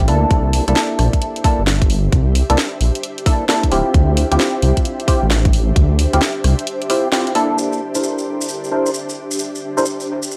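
A hollow, organ-like stab with chorus and analog delay leads this moody, late-night two-step garage excerpt at 132 BPM, riding over a deep, rumbling detuned saw bass with sidechain pumping, a tight up-front electronic kick, a garage kit with cracking snare, rim click and hi-hat, and an ethereal airy pad, before a band accent at 7.1 seconds gives way at 7.6 seconds to grainy maracas and a filter sweep on the stab, all captured in a dry, gritty hardware recording with transformer saturation.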